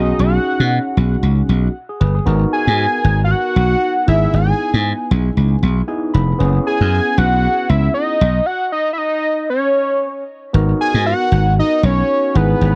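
Smooth and danceable, this early-eighties boogie funk excerpt at 116 BPM rides a swung sixteenth feel. A fat, detuned analog lead sings the melody with chorus, phaser and vibrato over a barky, gritty tine electric piano treated with phaser, while a punchy, up-front slap bass drives the low end. A short electric piano fill arrives at 5.6 seconds, and a stop breaks the groove from 8.5 to 10.5 seconds, all in a dry, close 1970s-style studio sound.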